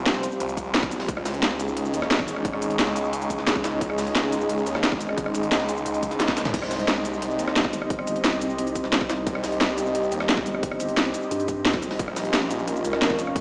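A snarling, overdriven saw bass growls under this tense, mechanical dark technical drum and bass cut at 176 BPM, joined at 7.7 seconds by a nasal, vowel-sweep wobble bass with chorus. An up-front kit with a cracking snare, crisp hats, rim clicks, toms, cabasa and crash drives the groove alongside a tight electronic kick from 0.6 seconds and a very quiet, gritty, pitched-up jungle sampler kit, with a brief drum fill at 6.2 seconds. Behind them, a deep, warbling ambient pad and an airy, breathy pad pump with sidechain through chords moving from Fsus2 to Bbm, all heard as if played on a big sound system in a bare stone room.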